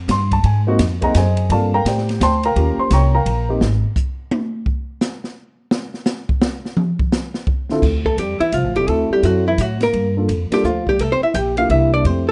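Smoky and moody, this cut from a longer small-group jazz piece swings at 171 BPM in 3/4, as woody pizzicato upright bass and a vintage baby grand piano with audible action noise lay down the opening changes over a boomy, small-room drum kit with dark cymbals. The drums take a solo from 3.6 seconds, and the band returns in D minor at 7.8 seconds. Just after, a clean, compressed hollow-body archtop guitar carries the melody while a breathy, whispered trombone adds a soft second line, all in a warm production with light reverb.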